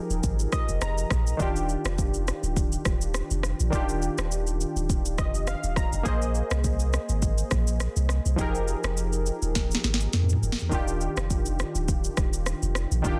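Sultry and hypnotic, this afrobeats excerpt with a lightly swung sixteenth feel puts round, detuned sawtooth analog keys with chorus and a filter sweep up front, adding short synth fills at 0.2 and 4.9 seconds over Fm11, Ebmaj9 and Bb9sus4 chords, while a deep sine sub bass with a pitch-drop attack joins a tape-toned electronic afro-pop drum kit of deep kick, sharp, softly clipped snare, rim click, shaker and toms that plays a fill at 9.6 seconds, all set in digital ambience with a dense, heavily limited modern master.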